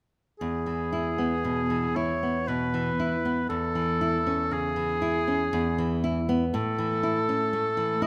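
From 0.4 s, a warm, close-miked oboe with light vibrato sings a tender, lyrical melody over a bright, fingerpicked nylon-string guitar, both up front in a moderate recital-hall reverb, as this short fragment of a romantic duo sways in a rubato 3/4 through E, A/E, E and A.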